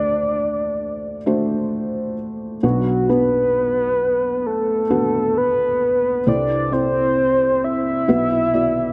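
From the first second, a felt-muted upright piano and a soft, octave-layered synth lead sound together in a heartbroken, emotional pop passage at a slow 66 BPM, cut from a longer piece and lasting 8.9 seconds. The dark, intimate piano sits up front with thick felt, accompanying a round, full lead whose sine and triangle tones, sub octave, wave-folding, chorus and vibrato give its sustained melody a warm, mellow presence. Light reverb and small-room ambience frame the harmony as it moves from D through Bm and Am/C to an unresolved Bsus4.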